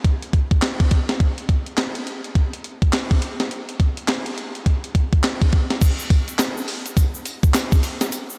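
Confident and bouncy, this short R&B excerpt rides a swung 104 BPM groove in 4/4, carried by an up-front 12-bit drum machine with a thumpy kick, medium-tuned snare, hi-hat, handclaps, tambourine and crash cymbal, all carrying vintage sampler grit and the air of a large room. At 5.8 seconds the music moves into a new section as a grainy, bright egg shaker joins quietly in the background, close and dry against the light reverb around the drums.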